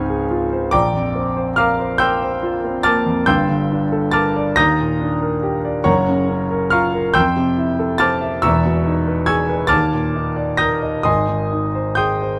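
A clear, intimate grand piano sits up front, close enough that the soft clicks of its action can be heard beneath the notes. This is impressionist classical solo piano with a hazy, dreamy mood, moving in a slow 6/8 at around 47 beats per minute to the dotted quarter, with a freely breathing rubato. The instrument covers a broad span from a low E1 to a high Bb6, and the harmony drifts through lush seventh and added-ninth chords: Dbmaj7 opens, Bbadd9 follows at 0.7 seconds, then Gmadd9, Ebmaj7, Gbmaj7, Fmaj7 and Emaj7 slide past before Ebmaj7 returns and Abmaj7 arrives at 11.1 seconds. A light reverb gives the polished piano tone a soft halo within a dark, warm overall production. The 12.4-second fragment is a single passage lifted from a longer piece, ending on that final chord.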